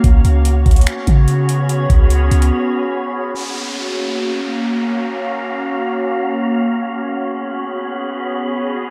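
Blissful and floating, this short cut of atmospheric cloud-rap drifts in free time in F# major, wrapped in a dreamy mix soaked in a lush hall reverb. A glassy FM pad holds ethereal sustained chords through the whole passage, its sound thickened by ensemble chorus and phaser, pumping against a sidechain and darkened by a low-pass filter. Beneath it, a booming analog drum machine with a deep kick, metallic hats and finger snaps plays up front alongside a clean, sine-like 808-style bass, and both drop out at 2.5 s for a brief break. From 3.4 s the harmony moves from a suspended C#7sus4 to F#maj7 while a filter sweep passes over the pad and an electronic downlifter descends until 6.7 s, when the suspended chord returns. Throughout, a faint, breathy wind-like noise texture lingers in the background, adding an airy haze around the pad.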